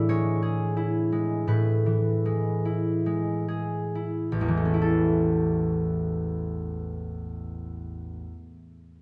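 Graceful and serene, this short classical fragment for solo concert harp unfolds in A major at a slow, rubato pace of roughly 32-45 BPM in 4/4, easing back over its first 4.8 seconds before settling from an E7 over A onto a plain A chord. The fingerpicked harp sits up front with a ringing, warm tone, spanning from A1 up to E5, and plays alone until it stops at 8.4 s. A moderate recital-hall reverb and a dark production lend the passage a soft, enclosing glow.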